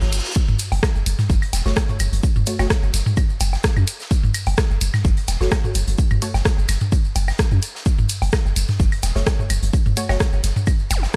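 A punchy, up-front electronic kick drives this quirky, clinical minimal techno excerpt from 0.4 s, over a deep, sidechain-pumped sine sub bass with a pitch-drop attack. A house kit adds hats and rim clicks, while tape-toned electronic toms and woodblock, a gritty, saturated low-tuned acoustic kit with a fat snare, filtered hats and shaker, and grainy, distant maracas fill out the groove. A muted, detuned sawtooth dub chord stab with lush chorus and delay appears from 1.7 to 6.3 s and returns near the end, a reverse cymbal and zap open the piece and flick back in just before the finish, and the mix sits in studio reverb.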